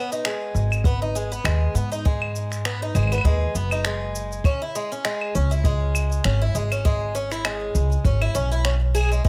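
This short excerpt sits in a lightly reverberant space, with a picked twelve-string acoustic guitar placed up front and trailed by a touch of digital delay. It is folktronica with a wistful, intimate mood and a gently swung 4/4 feel, cut from a longer piece. The octave-doubled guitar arpeggios sound bright and shimmering, if a little boxy, and move from G#m to C#m at 4.4 seconds. Electronic shaker, finger snaps and claves enter almost at once, their produced tone carrying the air of a large room. A woody pizzicato upright bass with steel strings sits up front beside the guitar from 0.5 seconds. A dark, punchy acoustic kick drum with a smooth edge, recorded in a small room, arrives at 0.8 seconds and anchors the groove.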